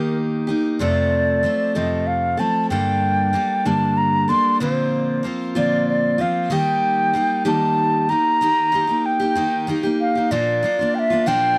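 A pure wooden flute with vibrato and a crisp attack carries the melody up front over a bright, full-bodied picked steel-string acoustic guitar with fresh strings and audible finger squeak, in this jangly, warm rock excerpt in 6/8 at 63 BPM that moves from Eb through Gmadd9 and Bbadd9 to Bb, captured with a dry, close 1970s-style studio sound and light reverb.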